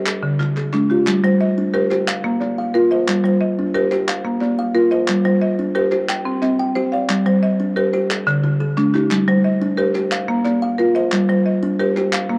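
A straight 12/8 interlocking cycle drives this hypnotic southern African traditional piece, a short cut from a longer work built on a repeating progression that keeps returning to Gm. A buzzing, dry hardwood marimba struck with medium hard mallets and a woody, boxy kalimba plucked by thumb both sit up front, spinning arpeggios together for the full 12.4 seconds, while crisp group handclaps sit further back. A moderate spring reverb and the warbling pitch drift of worn cassette tape give the whole piece an aged, dreamlike haze.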